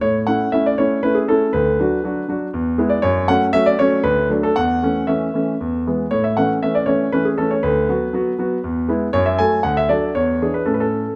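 A clear concert grand piano, up front with deep bass, natural tone and short sustain, plays this playful, elegant classical-period sonatina alone in A major at 119 BPM in a straight 3/4, moving through A, Bm/D, E and F#m before closing on E7 at 10.1 seconds, all captured with close, detailed microphones in a moderate recital hall reverb in this 11.2-second excerpt cut from a longer piece.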